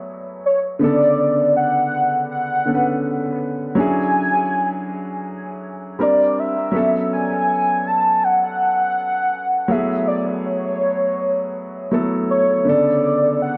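A velvety, detuned synth lead carries the melody over a concert grand piano with a deep, natural low end, both up front and both trailing dub echo, the lead also shimmering with chorus and vibrato. This sensual, moody R&B fragment moves at 81 BPM in a straight 4/4 in B dorian, its chords drifting from F#m11 and Bm9 through E13 and A69 within a moderate spring reverb. The echo-heavy mix gives the mellow, sustained lead and the piano's accompaniment a hazy late-night glow, and the passage is cut from a longer piece.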